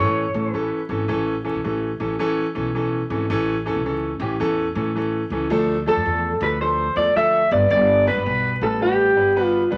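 Passionate and urgent, this short cut from an uptempo 1960s-style soul piece swings at 109 BPM, with a bright, twangy electric guitar through a small old amp carrying the melody up front, sounding briefly at the start and returning at 5.9 seconds with a slightly broken-up, picked edge. A clear grand piano with long sustain plays accompaniment throughout, while a woody, thumpy upright bass on gut strings anchors the low end with dark pizzicato. Moderate large studio reverb and vinyl crackle colour the sound as the chords move from A to Dm at 5.5 seconds and then to G.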